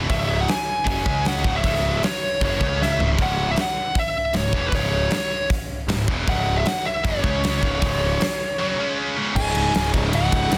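Aggressive and menacing, this hard rock clip drives along in a straight 4/4 with a bright, double-tracked high-gain guitar riff up front, a punchy fuzz-laden picked bass underneath, and a dark, overdriven lead guitar carrying the melody over a big acoustic drum kit in a bright stone room, with a tight kick, medium-tuned snare, cymbals and toms, plus a drum fill at 2.8 seconds. At 9.4 seconds a sludgy distorted guitar riff slips in low in the background alongside very quiet, flute-like tonewheel organ chords with key click and slow rotary speaker. The whole cut sits in light studio reverb and is dense and heavily limited.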